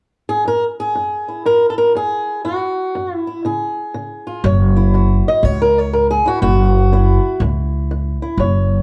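Rollicking and swaggering, this short cut of acoustic country blues swings at 121 BPM, led by a fingerpicked swing-style acoustic guitar with a boxy, fresh-stringed tone and a touch of plate reverb, carrying the melody from the start. At 4.4 seconds a dark, woody upright bass joins, plucked and placed up front, as the guitar launches into a solo for the second section. The whole duo sits in a reverberant studio, heard from a little further back in the room.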